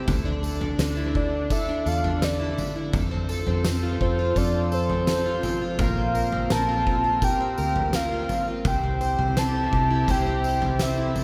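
A soft, octave-layered synth lead with a round triangle tone, sub-octave weight, vibrato, chorus and analog delay carries the melody from 1.2 s in this blissful, ethereal dream pop excerpt at 84 BPM in F major, moving through Dsus2, F, Bbsus2 and C. Beneath it, a shimmering, octave-doubled twelve-string acoustic guitar picks arpeggios through lush chorus and delay, while a swirling, detuned sawtooth pad with phaser sits in the background and a very quiet, glassy harmonics texture drifts alongside. A dark, foam-muted vintage electric bass supports an oversized, low-tuned drum kit that sits up front, with a fat snare, punchy kick, toms and tambourine in a pumping stone room, all in an echo-heavy mix with light reverb.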